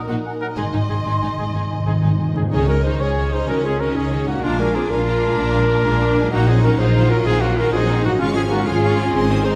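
A cinematic, heroic adventure film score in Db major, this soaring passage moves at 127 BPM in 12/8 and is cut from a longer piece. A dark, lush violin section carries the melody from a distance, while a clear, intense second violin section adds a higher line above it. A very quiet, airy flute ensemble, a distant dark clarinet and a mellow cor anglais, which plays only until 2.4 seconds, add further lines, and a very quiet, ringing concert harp runs arpeggios. Rich violas fill out the accompaniment, and rich cellos join a woody double bass section sitting up front in the bass. From 0.4 seconds a dark, roomy French horn section holds sustained chords and a mellow trumpet adds stabs, while round, soft-mallet timpani play a fill from 0.6 to 2.5 seconds. The harmony moves through Ebm/Bb, Ab, Dbsus2, Bb7 and Ebm/Bb again before settling on Db/Ab, all set in a moderate scoring stage reverb.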